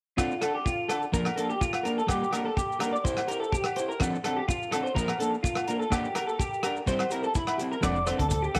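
Highlife guitar band music with a joyful, sunny mood, moving at 126 BPM in a straight 4/4 in F major, cut from a longer piece. Two electric guitars carry the harmony through a looping F6, Bb/F, Gm and C progression: one at the edge of break-up plays picked accompaniment with spring reverb, while the other, bright and twangy through a small old amp, sits up front with lo-fi arpeggios colored by analog chorus and tape echo. A soul drum kit with a tight kick and rolled-off top keeps time on hi-hat, kick and rim click, joined by ringing agogo bells and grainy maracas tucked in the background. At 7.8 seconds a dark, round fingered electric bass with a foam-muted, dub-deep tone enters alongside very quiet, thick-skinned congas, filling out the bottom just as the progression returns to F6. The whole band sits in a light, small-room ambience.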